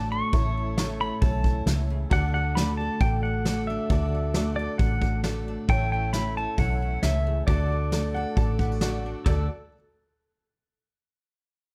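A straight 4/4 pulse at 134 BPM from a soft brush drum kit with a punchy kick, entering at 0.3 s, carries this easygoing, heartfelt honky-tonk and classic country piece in D major, where a dark, round, foam-muted vintage electric bass sits up front beneath a jangly, detuned honky-tonk upright piano and a full-bodied, fresh-stringed picked acoustic guitar over the chords A and D, while a clean, compressed pedal steel guitar, played with fingerpicks, slide and volume swells and bathed in plate reverb, sings the melody and is joined at 8.1 s by a brilliant, woody second upright piano line.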